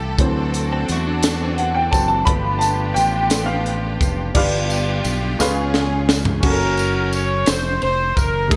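A slow, straight 6/8 pulse at 58 BPM, felt in dotted quarters, carries this uplifting, reverent gospel passage, cut from a longer piece. An intimate grand piano with audible action noise and a lush chorus takes a solo feature through the first 4.3 seconds over D7 and G7 harmony. Beneath it, an up-front fingered electric bass and a crisp fusion drum kit with a high-tuned snare, tight kick and gated reverb hold the groove, while a jingly tambourine adds sparkle. A clean, compressed electric guitar with phaser sits in the background as a brief second line, and a distant, bowed string section spreads smooth, sustained chords. The drums play a fill from 5.4 seconds over a Db7 chord, and at 6.4 seconds a mellow, tight horn section with light vibrato enters up front with the melody as the harmony lands on Gb. The whole piece is framed by a moderate plate reverb and bright 1980s-style digital production.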